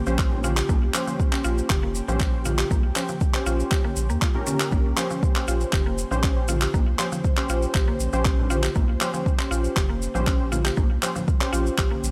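A digitally ambient, earthy afro house excerpt at 119 BPM in Bb dorian, resting on a single Bbm69 chord, where an overdriven deep kick sits up front with overdriven layered handclaps, a round sine sub bass pumps against the sidechain, woody FM mallet-like plucks play arpeggios and detuned sawtooth analog keys play chorused stabs through digital delay, while an ethereal airy pad holds sustained chords, grainy maracas add texture, and ringing congas sit in the background.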